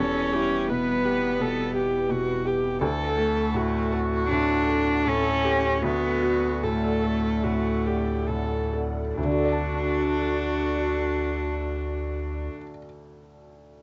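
Rubato and slowing between 1.4 and 9.2 seconds, this tender, hopeful neoclassical excerpt in D major drifts at 67-85 BPM from Em to D, as a felt-muted upright piano with audible action noise carries the accompaniment alongside an up-front, sul tasto viola, while a close, lightly vibrated cello sings a second line, a breathy, detuned chorus pad sustains chords in the background, and a round sine sub bass anchors the low end, all through a hazy cassette sound in a small booth until the piano rings on alone to 13.8 seconds.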